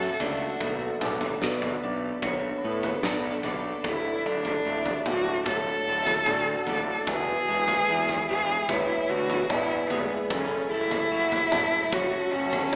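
Heard through an AM radio sound, this short post-rock passage sits in the wet reverb of a church or concert hall, and its hopeful, soaring mood unfolds at 74 BPM in a straight 4/4 in D lydian. A rich, focused cello carries the melody up front, bowed by one close player with vibrato. Behind it, a bright, twangy twelve-string electric guitar plays clean, compressed, picked arpeggios, while a ringing, metallic vibraphone with medium hard mallets and medium motor vibrato adds arpeggios of its own higher up. A granular cloud pad holds blurred, evolving chords in the background, detuned and bright with its built-in reverb and phaser, and a round, fuzz-overdriven fingered bass anchors the low end until 12.6 seconds. A big acoustic rock kit with a punchy kick, medium-tuned snare and toms enters at 0.2 seconds in a stone-room ambience, as the harmony moves from F#m7 through Bm7, Dadd9 and E before returning to F#m7.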